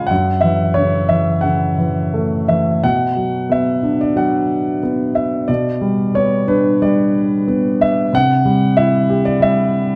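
Set at 91 BPM in 4/4 with a rubato feel, this classical solo piano piece moves with a lyrical pulse in B minor, tuned to A4 = 445 Hz. A single grand piano carries the whole passage, its tone dark, mellow, smooth and vintage, sitting up front with long sustain across a range from F#2 to B5. The harmony opens on F#m7, shifts to Bm at 2.8 seconds, passes through G/B, and arrives at a C chord at 8.1 seconds, lending the music a moody, bittersweet color. A moderate recital hall reverb surrounds the instrument, and the production keeps a dark, warm character throughout. Cut from a longer work, the short excerpt feels like a fragment of a larger piece.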